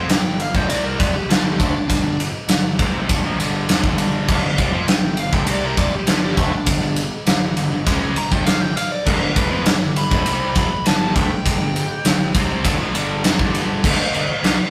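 A high-gain, double-tracked guitar riff and a growly fuzz bass open this anthemic, energetic hard rock excerpt, joined at once by an up-front acoustic drum kit with a fat snare, tight kick, crash and ride ringing in a stone room, while a biting overdriven lead guitar solos on top until 12.3 seconds, a very quiet, scooped second distorted guitar thickens the riff from 4.3 seconds, and the rough rehearsal-room sound carries moderate reverb and tube saturation.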